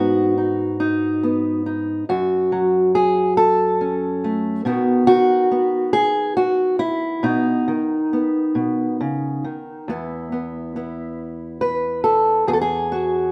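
Nostalgic yet hopeful, this short folk excerpt in a straight 6/8 features a lone fingerpicked acoustic guitar, an old ladder-braced instrument with a dark, woody, boxy tone from aged strings, placed up front in the mix. The harmony drifts from G#m7 through F#m to B before settling onto E at 9.9 seconds, opening into a brief second section. A moderate stone-room reverb gives the playing a live, intimate sense of space.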